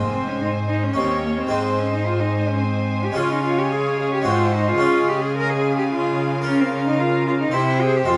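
From the first moment, a solo cello with a rich, focused tone sings the melody up front, joined by a distant violin section carrying the melody in the background and a very quiet chamber violin section tracing a second line. This is a stormy, driving baroque-style concerto movement with solo episodes, in 3/4 at 109 BPM, cut from a longer piece. A full-bodied harpsichord, plucked in the French style on two sets of strings, accompanies across a span reaching from its low register into the middle, while a lush, smooth viola section fills in the middle and a clear cello section anchors the bass up front. The bowed string sections carry vibrato, and a moderate stone room adds a one-second reverb tail. The harmony circles Ab and Db before arriving on C at 7.5 seconds, shortly before the passage breaks off at 8.2 seconds.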